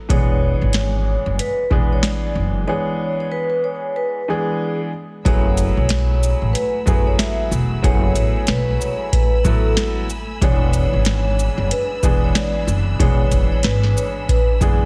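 A gritty, tough boom-bap hip-hop cut at 93 BPM in F# minor opens on an E7 with a ringing vibraphone melody through digital delay, a vintage upright piano with a cassette-tape tint, a growly pizzicato upright bass and a booming analog drum machine with a deep kick, crisp snare, metallic hats and shaker, all riding a swung 16th-note feel. After a break from 2.7 to 5.3 seconds, a dark, lush bowed string section enters low in the mix under an F#m11 before the harmony returns to E7 at 10.4 seconds. The whole track carries light reverb and a heavily compressed radio sound.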